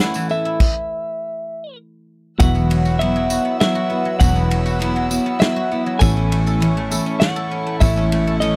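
Uplifting and hopeful, this building indie folk passage in 3/4 at 100 BPM moves from A to Esus2 and back, with a clean, compressed electric guitar carrying the melody through harmonic tremolo over a full-bodied jumbo acoustic guitar, a clear, woody upright piano kept very quiet, and silvery, ringing guzheng arpeggios; a jingly tambourine and a punchy, up-front country drum kit join almost at once before a stop, and at 2.4 seconds a round, dark fingered electric bass and soft, floating chamber strings set in the background arrive, heard through a dry, close 1970s-style studio sound.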